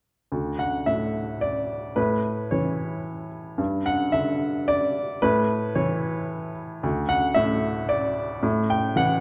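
Classical and tender, this intimate passage cut from a longer piece has a lone upright piano with a woody, polished, up-front tone and short sustain, playing an accompaniment in a rubato 3/4 from 0.3 to 9.2 seconds and ringing into a wet recital-hall reverb.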